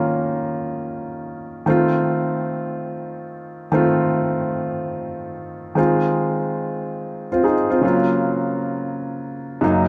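A warm, intimate grand piano plays alone in free time through this glamorous, danceable disco fragment cut from a longer piece, sitting up front with audible action noise and a natural tone in light reverb as it moves from Ebm7 and F7 into a new passage at 5.8 s on Fm7 and Gbmaj7, spanning Gb2 to Ab4 amid lossy compression artefacts.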